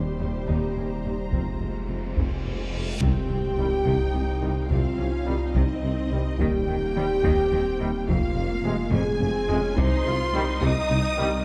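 In a straight 6/8 pulse, this tense, vast fragment of a hybrid orchestral and electronic film score opens on a clear, intense and distant violin line over smooth violas, lush background cellos and very quiet double basses, with trombone chords, a very quiet ethereal pad, a mellow solo tuba and a swirling, saturated, phased saw bass beneath, before heavy-stick taiko enter at 1.3 s, an electronic reverse cymbal rises into an impact at 3.0 s where loose French horn chords and a focused violin melody join, and a drum fill lands at 8.9 s, all in a dark production with moderate scoring-stage reverb.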